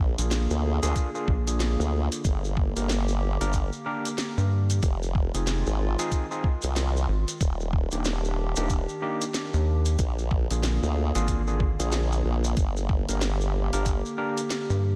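A lightly reverberant, gritty mix opens this swaggering glitch hop excerpt in 4/4 with a swung sixteenth feel, cut from a longer piece. Two basses sit up front. A formant-sweep wobble bass blends sawtooth and sine tones through a formant filter with chorus, and a rubbery square bass sounds hollow, bouncy and nasal with a plucked filter. An electronic drum kit whose cracking snare, bright hats and rim click were re-recorded in a small room enters at 0.2 s alongside grainy, band-limited maracas, and from 1.0 s a compressed, pitched-down electronic kick thumps hard at the front. Above them, an overdriven tine electric piano barks stabs through a combo amp with delay and sidechain pumping. A warbling, detuned tape-like pad holds nostalgic lo-fi chords with chorus, built-in reverb and pumping, moving through Bb7, Gm, Fm7 and Ebmaj7 until 15.0 s.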